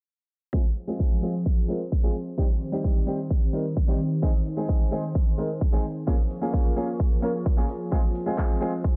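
A punchy, up-front electronic kick drives a straight pulse through this short cut from a festival progressive house track, with a big-room dance kit of handclaps and metallic hi-hats sitting in the background from 0.8 seconds. The mood is emotional and euphoric, built on a minor-key progression that moves from Fm through Cm, Ab and Bbm7 before returning to Fm. A clear concert grand piano plays accompaniment in its middle register, its short-sustained notes carrying deep bass weight and trailed by digital delay, while sidechain pumping makes it breathe. Alongside it, a lush, detuned unison pad of sawtooth and square-wave tones holds sustained chords with a slow attack and long release, its vintage, warbling chorus giving it a thick, full-bodied glow as it also pumps in time. The whole passage rides a filter sweep and sits in digital ambience, with the highs rolled off above 10.7 kHz.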